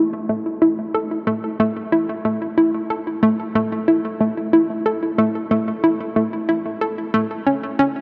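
Ambient fragment, expansive and mysterious, where a lone hollow, bouncy square-wave pluck with a detuned, wave-folded edge, sub-octave weight and fast attack sits up front, treated with chorus and delay and set inside a huge, wet reverb that lingers for about 9.3 seconds.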